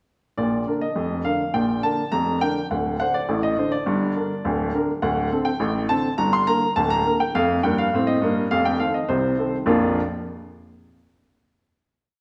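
Ragtime piano in Bb major, a short, playful and lively complete piece at 103 BPM in a straight 2/4, with a baby grand tuned to A4 = 437 Hz playing solo from 0.4 to 10.0 seconds across a range from D1 to C6. Its warm, open tone sits up front with long sustain, carrying a single-line melody over a stride bass through Gm, Fsus4 and F7 before settling on a closing Bb chord at 9.7 seconds. A wet recital-hall reverb with a 1.4-second decay places the instrument in a church or concert hall.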